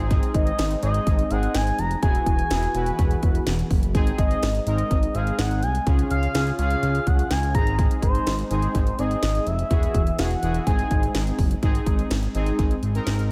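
Set in a light, echo-heavy reverb, this upbeat, bright synth-pop excerpt moves at 125 BPM in Ab mixolydian, with a punchy house drum kit and a fat, detuned sawtooth bass sitting up front while a smooth pad holds sustained chords with chorus in the background. Bold, brassy analog synth brass with a dark edge and tape echo fills out the harmony over chords moving between Ab, Eadd9 and Db. A nasal, expressive synth lead with vibrato carries the melody from 0.3 to 11.1 seconds, leaving the accompaniment to play on into a new section from 11.6 seconds.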